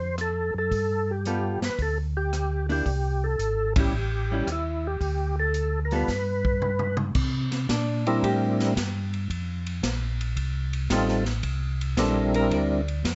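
Soul jazz organ trio in a soulful, swinging 4/4, cut from a longer piece with light reverb and a soft top end. An overdriven tonewheel organ carries the melody with a gritty, percussive bite from its second harmonic percussion, coloured by chorus vibrato and a slow rotary speaker. A second, mellow tonewheel organ plays the bass line, round and dark, also through chorus vibrato and a slow rotary speaker. A hollow-body jazz guitar, clean and picked, accompanies with a shadowy tone. The acoustic big-band drum kit, airy and polished with a punchy kick and medium-tuned snare, enters at 0.2 seconds, joins a band accent at 3.7 seconds, and plays a fill leading into a guitar solo that starts at 7.2 seconds over dominant ninth chords.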